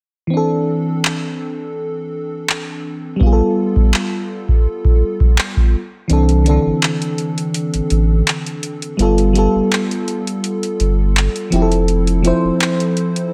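A lush, warbling FM electric piano layered with a soft pad carries this tender, romantic contemporary R&B excerpt, its detuned, chorused chords drifting through C69 and G9 with a dreamy, vintage glow. A dry analog drum machine joins with handclaps and metallic hi-hats over a booming kick, and at 6.1 seconds the kick falls silent as a thick, saturated sub bass enters, the harmony later moving to Fmaj7. Light reverb and digital ambience lend the mix a gentle sense of space, and the groove has a relaxed swing.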